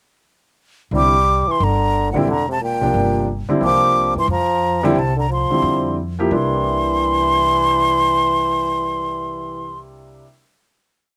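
At 0.9 s an upright bass with a woody, thumpy pizzicato two-feel, a baby grand piano comping in syncopated quartal voicings with long sustain, and a punchy, vintage-toned trombone enter together. A moment later a breathy concert flute takes the lead up front with expressive, vibrato-laden song phrases built on short motifs, while the trombone follows a harmony line mostly in sixths. This short, open and spiritual modal jazz piece in C mixolydian swings at 178 BPM under light reverb in an outdoor setting, moving from C9 through Fsus2/C and back to a sustained final C9 chord from 6.3 s.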